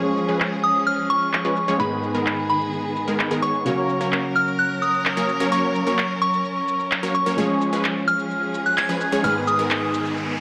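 Festival progressive house at 129 BPM in F# major, triumphant and euphoric, with a soft FM synth bell carrying the high melody through chorus, delay and gritty 12-bit sampler texture over a smooth vintage grand piano, rich bowed chamber strings holding sustained chords, a punchy detuned supersaw stab riff with a filtered pluck up front, layered electronic shaker and handclaps, and a very quiet riser entering at 9.0 seconds, all set in a lush hall reverb.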